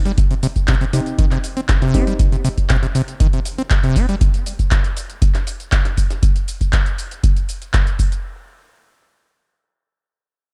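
A squelchy, resonant sawtooth acid bass riff with tube saturation and tape echo drives this short acid house cut at 119 BPM in 4/4, sitting up front beside a deep electronic kick that runs through 8.1 s, while a booming analog drum machine adds metallic hats, cabasa and handclaps and a very quiet, gritty sampler-style kit contributes hi-hat and a medium-tuned snare. From 0.9 to 2.2 s a soft, dark chord stab with analog chorus and tape echo sounds over C minor, and the bass drops out at 4.2 s, leaving the drums to carry the drop. The mood is playful and raw, with a dark production and little reverb.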